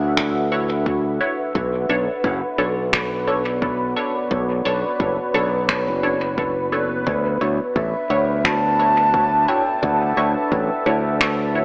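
Swung sixteenths push an 87 BPM pulse in 4/4, where an electronic kick drum and overdriven, up-front finger snaps carrying dub echo enter at 0.2 seconds to anchor this spacious, deep ambient dub piece in B minor. Beneath them, a bright, growly fingered electric bass sits close and direct, while a dark, detuned sawtooth pad with chorus and its own reverb sustains chords that move from Dmaj9 to Bm7 and back to Dmaj9 at 7.1 seconds. Muted, decaying chord stabs with phaser, analog chorus and dub echo dot the mix, and a resonant, bubbling texture of random filter steps hovers on a single high note. At 7.8 seconds a breathy, mellow concert flute with vibrato and rolled-off highs carries an expressive melody through dub echo until 10.5 seconds. The whole is bathed in a moderate concert hall reverb yet filtered through a narrow AM radio sound, giving the cut-down passage a distant, broadcast character.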